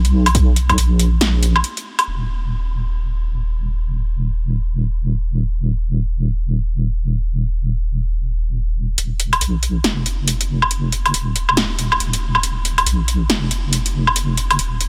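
A half-time groove with swung sixteenths drives this cavernous, heavy deep dubstep clip, cut from a longer piece, which opens on a drop that gives way to a brief break. Up front, a layered electronic drum kit pairs a punchy snare with metallic hi-hats and a woodblock, overdriven and filtered dark in a small room ambience, while an overdriven electronic kick sits deep in the background for a brief moment near the start. Also up front, a deep, soft wobble bass with triangle and sine tones holds the low end the whole way through, its fast attack and sustained, compressed body thickened by chorus and tube saturation into a dark presence. After the kit drops out at 2.1 seconds, the wobbling bass carries the track on its own until the drums return at 9.0 seconds for a build-up that runs to the end. A digital ambience wraps the parts in a sense of murky depth.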